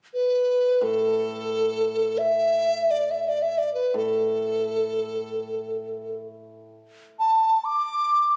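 Captured on a phone in a recital hall with moderate reverb, this short cut from a longer piece of Chinese traditional chamber music moves in free time with a festive yet graceful mood, as a mellow large bamboo dizi with a buzzing membrane carries the tongued, vibrato-laden melody up front from 0.1 seconds while a bright, shimmering hammered dulcimer rings beneath it at a lower level from 0.8 to 6.7 seconds.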